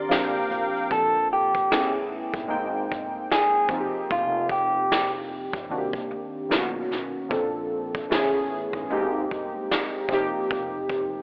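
Lo-fi hip hop in Bb major at 75 BPM with a swung, nostalgic and mellow feel, cut from a longer piece, where a brief shimmering musette accordion chord gives way at 0.9 s to a slightly broken-up electric guitar melody from a small old amp that plays until 5.1 s. Detuned, chorused synth keys carry the drifting maj7 and ninth chords up front, a woody, dark pizzicato upright bass sits in the background, and a punchy brush drum kit with vintage 12-bit sampler grit keeps time, its hi-hats muted once the guitar enters. The whole mix sits in a moderate plate reverb with worn, warbling cassette-tape pitch drift and a telephone tone.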